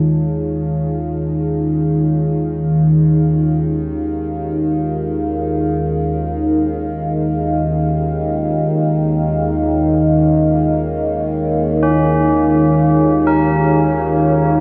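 Unsettling and cavernous, this dark ambient drone piece rests on a resonant, ring-modulated synth drone whose moving overtones shift under a filter sweep, paired up front with a deep, full-bodied pad holding sustained chords, both thickened with chorus. A very quiet bronze singing bowl rings with slow, metallic beating beneath them, and at 11.8 s solemn tubular bells enter with arpeggios carried on a delay. The production is warm and drenched in huge reverb, and the passage is cut from a longer piece.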